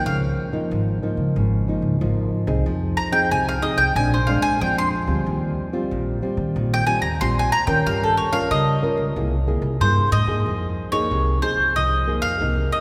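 Bathed in a long, wet church reverb, this nostalgic, yearning samba and choro fragment puts a warm, double-strung mandolin up front, soloing on the melody until 10.5 seconds, when a new section begins, over an up-front, thumb-plucked classical nylon-string guitar accompaniment and a dark, woody pizzicato upright bass.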